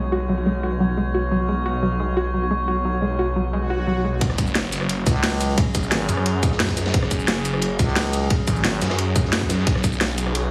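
Dark technical drum and bass, tense and mechanical, opens on an eerie metallic drone, a warbly lo-fi pluck arpeggio and a swirling phased saw bass, then a swell and sub drop at 3.6 seconds leads into a drop at 4.2 seconds where a tight overdriven kick and a cracking layered electronic kit with bright hats and shaker push up front, a gritty breakbeat kit sits in the background, and a growling FM bass joins up front at 5.1 seconds, all through a heavily compressed, radio-like mix.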